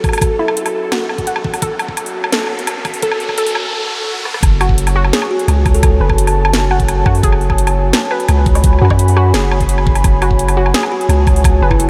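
A dark, detuned analog pad pumping with chorus, a warbling lo-fi pluck tracing arpeggios through diffuse delay, a cracking snare with metallic hats, rim clicks and woodblock, a knocking tape-warm kick and a very quiet pulsing gated texture open this spacious, heavy half-time drum and bass passage, as a background riser and swell build toward a drop at 4.4 seconds where a deep, mellow 808-style bass lands up front, while a woody, gritty kalimba rings in brief fragments across the passage, the whole dreamy mix soaked in huge reverb.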